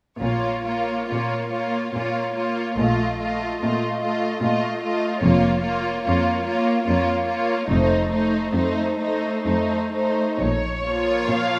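A dark, woody violin section carries the melody from a distance, while a warm, up-front second violin line sings beneath it with expressive vibrato in this solemn, yearning classical excerpt in Bb minor, moving in a rubato 3/4 at around 60-76 BPM. Lush viola, cello and double bass sections fill out the harmony and bass, the violas and cellos with smooth, even bowing and the basses focused with a smooth top, stopping at 11.2 s just before the others close at 11.6 s. The chords move from Bb minor through F7 and back, and a wet scoring-stage reverb wraps the strings in a spacious sound.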